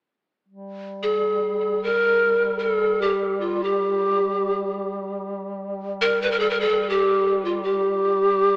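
A dreamy, reverb-soaked sound with the narrow, boxy character of an AM radio wraps this short Arabic maqam ensemble excerpt in a long plate tail. The mood is warm and passionate. A mellow duduk enters at 0.5 seconds to hold a low drone on G3, sitting distant and roomy in a folk style, its tone shaded by vibrato and scooped notes. At 1.0 seconds a bamboo pan flute takes the melody between F4 and B4, placed up front with a breathy tone, a crisp, chiffy attack, lifted highs and expressive vibrato. Tape echo trails the flute's phrases, and both parts carry on together until 8.6 seconds.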